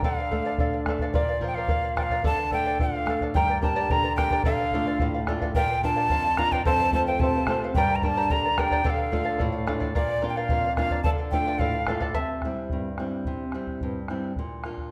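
A wet recital-hall reverb surrounds this melancholic yet festive Andean folk excerpt in D minor, moving at 109 BPM in a straight 2/4. A breathy, reedy cane quena carries the tongued, vibrato-laden melody up front until 12.0 s, over a fingerpicked charango with shimmering double strings, a bright, up-front flamenco guitar with audible finger squeak, and a round bombo. At 12.2 s the harmony shifts to C and the charango takes a short solo as the piece is cut off.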